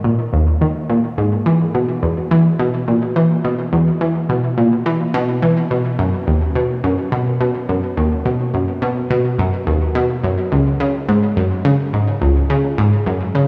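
A round, detuned sawtooth analog pluck plays alone and up front for the full 13.5 seconds, its bright, fast-attack notes decaying in a low register from Db2 to E3, thickened by chorus and tape echo. This short ambient cut from a longer piece moves at 106 BPM in a straight 4/4, tuned to A4 = 445 Hz. A huge ambient reverb with an 8.0-second tail lends it a mysterious, expansive mood.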